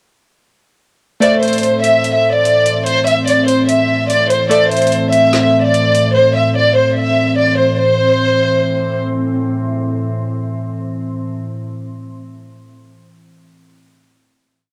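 This menacing, hard-hitting trap piece runs at 146 BPM in a half-time 4/4 feel, with a trap drum kit of woody snare and metallic hi-hats rolling fast from 1.2 seconds until it drops out at 6.0 seconds. Set in A minor over a single A minor chord, the piece opens into a breakdown where a chamber violin section carries an up-front looping melody between C5 and E5, bowed sul tasto with light vibrato and a soft, intimate attack. Beneath it, glassy digital keys warble through held, spread chords with chorus, filter sweeps and fast-decaying tones, repeating like a sampled loop until 7.8 seconds. An ethereal FM pad with slow attack, ensemble chorus and long release sustains mellow chords up front in the mix and rings on through the final chord to 11.2 seconds. Cassette tape colour runs through every part, and plate reverb is added to the violins, keys and pad, all inside a damp, close booth ambience that gives the whole piece a lo-fi home-recorded feel.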